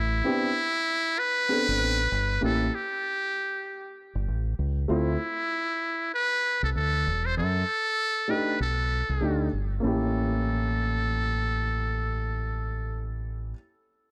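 Cool and smoky, this jazz-hop cut from a longer hip hop piece rides a swung 4/4 groove on a round, up-front fingered electric bass with a deep dub tone and a dark, mellow grand piano whose intimate, vintage sound carries audible action noise. Over them a trumpet with a metal mute plays the solo melody, its buzzy, thin tone touched with light vibrato, scooped notes and an analog delay. The harmony moves through rich extended chords from Am11 to Dm9, then a B7alt turns back to A7b9 at 9.8 s, set in a light reverb.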